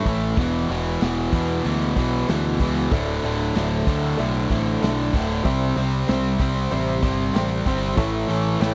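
Two up-front, bright overdriven guitars (one a cranked stack, the other distorted) open this confident, swaggering classic rock excerpt with a picked riff over a growling, overdriven picked bass and a punchy vintage drum kit with rolled-off top, while a barky, reedy electric piano with fast tremolo enters in the background at 2.9 seconds as the chords move from E5 through Dsus2 and Cadd9 to A, all in a dry, close 1970s-style small room.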